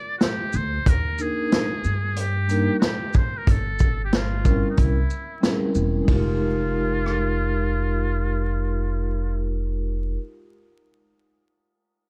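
Dark production with vinyl crackle and small-room ambience frames this cool, smoky jazz-hop excerpt in F minor at 92 BPM with a swung feel, where a buzzy, breathy metal-muted trumpet carries the melody from the opening, a vintage drum kit with dark cymbals and a punchy kick sits up front until 7.3 seconds, a woody pizzicato upright bass holds the low end, and a mellow, ringing soft-mallet vibraphone with slow motor vibrato accompanies from 1.2 seconds over chords moving from Bbadd9 through Ebmaj7, Gdim and C7b9 to Fm11.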